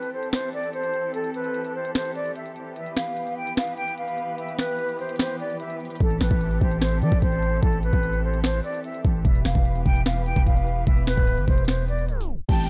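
A trap drum kit with a knocking kick sits up front, its sharp snare, crisp hats, finger snaps and crash cymbal coloured by a tape-toned, vintage 12-bit sampler grit that gives this menacing, dark hip hop cut its half-time weight. Over it, a pure concert flute carries the melody with vibrato and a soft attack, sounding distant through its delay. Beneath the flute, a muted string section played con sordino holds veiled, bowed chords moving between Am7 and Em. At 6.0 seconds a growling, buzzy 808-style bass arrives up front with a fast attack and decaying tail. A tape stop near the end gives way at 12.5 seconds to brief touches of a lush violin section on a single high note, a mellow, boxy grand piano with audible action noise, and an electronic downlifter, all in a dry, dark production.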